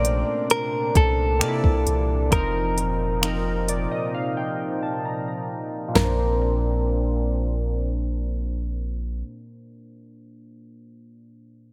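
A clean, direct-recorded electric guitar carries the melody with tremolo and tape echo in this dreamy, romantic contemporary R&B excerpt at 66 BPM in Bb major, over detuned analog keys with a filter sweep, a smooth warbling pad, a deep sine-like 808-style bass and an up-front produced drum kit of finger snaps, soft kick and fat snare that stops at 6.2 seconds, leaving the keys alone from 9.2 to 11.7 seconds in a dry sound.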